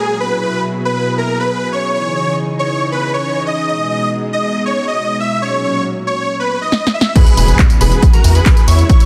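A huge, thick supersaw carries the melody from the start, its detuned sawtooth stack compressed and up front, roughened by vintage 12-bit sampler grit and trailed by delay as it pumps against the sidechain. Beneath it a lush unison pad holds sustained chords with a slow attack and long release, bright and full-bodied under chorus, moving through Eadd9, C#madd9, G#m and F#add9 in this euphoric, soaring stretch of uplifting trance. A house drum kit with a punchy snare, warm hats, handclaps, tambourine and crash enters with a fill at 6.7 seconds, setting up the drop at 7.2 seconds, where a punchy, tape-warm electronic kick, a very quiet impact and a catchy plucky unison lead arrive together, the lead sitting in the background high above with its own delay and filter sweep. From 7.4 seconds a gritty, aggressive synth bass joins, distorted and resonant, pushing up front alongside the kick. Light reverb ties the parts together, and the clip ends shortly after the drop begins, cut from a longer piece.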